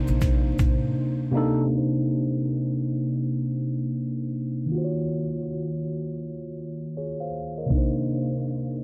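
Swung sixteenths in 4/4 give this reflective, nostalgic lo-fi hip hop fragment, cut from a longer piece, a lazy, loping feel. A mellow tine electric piano carries the whole passage up front, its clean tone heard as if through built-in speakers and coloured by cassette tape as it moves from Cm7 to Ebm7 and back to Cm7. In the opening moments, a gritty, compressed sampler-style drum kit with a thumpy kick and hi-hat sits forward in the mix. Alongside it, a dark, woody pizzicato upright bass on gut strings and a grainy, bright egg shaker sit in the background. These three parts drop away within the first second, and only the drums return near the close at 7.7 seconds. The dreamy mix is soaked in a huge ambient reverb, with vinyl crackle and a low-pass filter, and a filter sweep runs from 1.7 seconds to the end.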